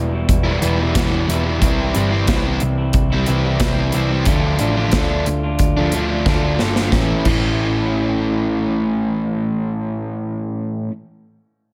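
Bittersweet and cathartic, this quiet-loud alternative rock clip from a longer piece moves at 90 BPM in a straight 4/4 through Em, C, Dm and A, with a slightly broken-up electric guitar through a small old amp picking dark arpeggios, a round, amped hollow-body short-scale bass holding the low end, a double-tracked overdriven guitar riff up front, and a big acoustic rock kit with a boomy kick and medium-tuned snare that plays a fill from 6.3 to 6.9 seconds before dropping out at 7.4 seconds, all set in light reverb and small room ambience.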